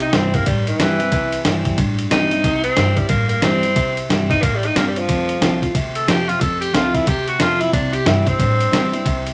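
Rockabilly at a rollicking, upbeat 182 BPM with a swung feel in C mixolydian, this excerpt puts a bright, punchy, forceful tenor saxophone solo with vibrato up front over a picked, full-bodied steel-string acoustic guitar, a woody pizzicato upright bass and a gritty, compressed sampler-style drum kit with thumpy kick, snare and ride, moving from C to F at 5.1 seconds and back to C at 7.7 seconds under light reverb.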